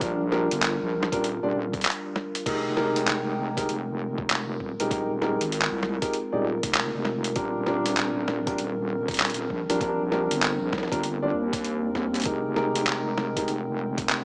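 Gritty and swaggering, this glitch hop cut from a longer piece moves at 98 BPM in F dorian with a swung 16th-note feel, as a boxy dark grand piano plays stabs with tape echo and sidechain pumping over a moody, detuned analog pad with chorus, a heavy, saturated wobble bass, an up-front, pitched-down sampler-style kit with a high-tuned snare, handclaps, hi-hat and crash, and a thumpy electronic kick, all cycling between Ebmaj7 and Fm11 in light digital ambience with a small-speaker sound.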